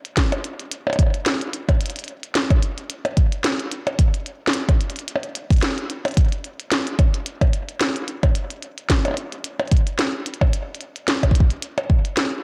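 A glitchy drum kit opens this short IDM fragment at 0.1 s, with clicky hi-hats, percussion blips and a tiny snare, and an electronic kick drum joins it at 0.2 s. The groove sits at 110 BPM in 4/4 with a light 56% swing on the sixteenths, giving the intricate, glitchy patterns a slightly loose, human lean. The deep kick is the strongest element, set up front, while the kit, also up front, sits lower in level and carries a dub echo that scatters its hits into the space. Both parts were re-recorded in a small room, lending them a close, boxy presence against a moderate plate reverb with a 2.0 s tail. The echo-heavy mix keeps the texture busy until the kick stops at 12.0 s and the kit at 12.3 s, the fragment being cut from a longer piece.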